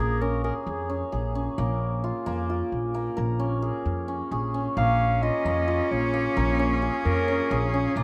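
Contemporary instrumental chamber music in 7/8, restless and hypnotic, cut from a longer piece. A shimmering hammered dulcimer rings out arpeggios up front over a woody, growly pizzicato upright bass, while a warm solo clarinet carries the melody and a very quiet glockenspiel with rubber mallets adds soft, bell-like touches. At 4.8 seconds a clear, bowed cello enters with a smooth vibrato second line, and a tight woodwind section holds sustained chords in the background, captured with close, detailed microphones and light reverb.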